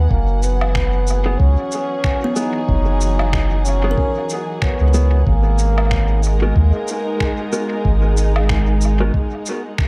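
A mellow, vintage-toned trombone carries the solo melody with light vibrato and tape echo in this meditative, hazy ambient dub excerpt, set over a deep, round sub bass up front and a muffled, thumpy electronic kick. Dark strings hold sustained chords, a woody kalimba rings out echoed arpeggios in the background, and a very quiet bubbling, resonant filter texture drifts beneath. Compressed shaker, woodblock and finger snaps carry dub echo, as does a clean, fingered electric guitar whose stabs enter at 1.3 seconds.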